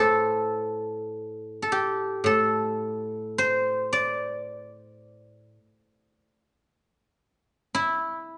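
Contemplative and longing, this brief solo guzheng excerpt from a longer Chinese traditional piece unfolds in free rubato around 54 BPM in A yu mode, its fingerpicked strings ringing silvery and up front from A2 to D5 within a moderate large-studio reverb, tuned slightly low at A4 = 437 Hz, with a soft top end.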